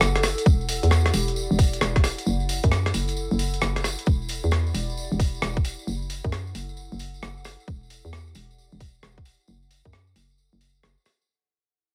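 Steeped in vinyl crackle and kept fairly dry, this moody, late-night two-step garage clip moves at 133 BPM in 4/4 with a 65% swing on the sixteenths, trading Em9 and F#m7 chords. A hollow, bouncy FM bass knocks with punchy, fast-attack, decaying notes under a gritty, compressed breakbeat kit of hi-hat and rim click, while a tight, layered electronic kick sits up front from 0.5 to 9.9 seconds and a jingly tambourine stays close in the background. Above them, a warbling, nostalgic lo-fi pad of detuned, wave-folded square and triangle tones breathes with chorus, its own reverb and sidechain pumping, and it fades out across the whole clip.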